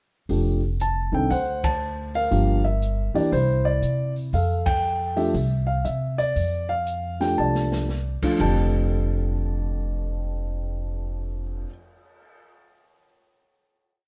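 Lightly reverberant and intimate, this short, sophisticated swinging jazz piano trio piece in F major at 118 BPM features a dark, mellow grand piano with audible action noise playing motif-based call phrases over syncopated drop2 comping, a woody pizzicato upright bass in a two-feel, and an airy small-room drum kit keeping time on the hi-hat with dark cymbals and a boomy kick, marked by band accents at 1.6 and 4.6 seconds and a drum fill at 7.4 seconds before a final chord from 8.4 seconds.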